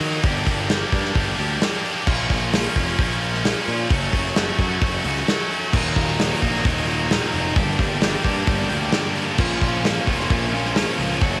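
This dry home cassette recording, cut from a longer piece of quiet-loud alternative rock, carries an angsty, dark mood in straight 4/4. Up front, an acoustic rock kit with a tight kick, medium-tuned snare, hi-hat and crash has a rolled-off top and the grain of tape, set in a big room sound. Beside it, a bright, high-gain guitar drives a distorted picked riff from 0.0 seconds, over a punchy, overdriven fuzz bass with a warm tone. At 5.7 seconds a second picked guitar, thick with fuzz, joins the riff from the background. Beneath them, a fat, clean tonewheel organ holds very quiet sustained chords through a slow rotary speaker and chorus vibrato, as the harmony moves through Gm, Bbm, Gbm and Ebm before returning to Gm and Bbm.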